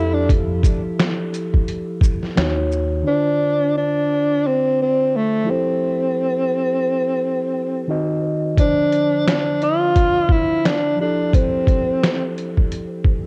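A breathy tenor saxophone with whispered subtone and scooped notes carries a reflective, nostalgic lo-fi hip hop melody over a mellow tine electric piano, both dulled by cassette tape and a low-pass filter, with tape echo trailing the saxophone. A dark, round fingered electric bass sits beneath them until 3.0 seconds, while a gritty, compressed, pitched-down sampler-style drum kit with a thumpy kick, snare, hi-hat, shaker and finger snaps sits up front with a gentle swing. The drums drop away at 2.9 seconds and return at 8.6 seconds, and the cut-from-a-longer-piece fragment has the light reverb and cassette haze of a home recording.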